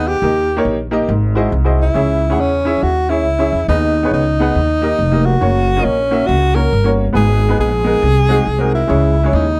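A breathy tenor saxophone, an upright piano and a pizzicato upright bass enter together in this solemn, fervent stretch of uptempo gospel at 138 BPM in 4/4, swung on the eighths and cut from a longer piece. Up front, the close-miked sax sings an intimate, whispered jazz-style solo with vibrato and a soft attack. Beneath it, the woody, present piano comps through chords such as G#7b13, C#m and F# while the growly, thumpy bass anchors the low end, all captured in a dry, close 1970s-style studio sound with light reverb.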